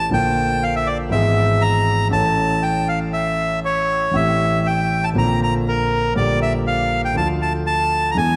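A tense, melancholic tango fragment in a free rubato 4/4 features a reedy, bright bandoneon singing the melody up front with tape echo over an intimate concert grand piano whose deep bass, smooth vintage tone and audible action noise carry the accompaniment through a moody progression that settles on D minor, all set in a moderate scoring stage reverb.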